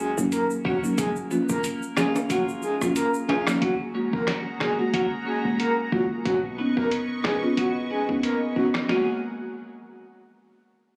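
Dancehall in F# major at 91 BPM with a light 16th-note swing, this summery, bouncy clip is cut from a longer piece and moves from D#m7 and A#m toward F#add9 and Badd9. A breathy, flute-like synth lead carries the melody up front with chorus, vibrato and digital delay, over a woody, buzzing marimba played with soft mallets that supplies mellow, round accompaniment. A twangy twelve-string electric guitar picks clean arpeggios through tremolo, while a short, punchy 808-style bass sits tight in the background. A muffled, sampler-style drum kit with a thumpy kick, medium-tuned snare, hi-hat, rim click and toms runs nearly the whole way, preceded by a moment by a close, dry egg shaker and timbales that play alongside it until 3.6 seconds. From 4.0 seconds a lush, detuned unison pad adds airy sustained chords with chorus, phaser and sidechain pumping. The whole thing sounds as if caught on a phone in the room, with club reverb, light reverb and compression.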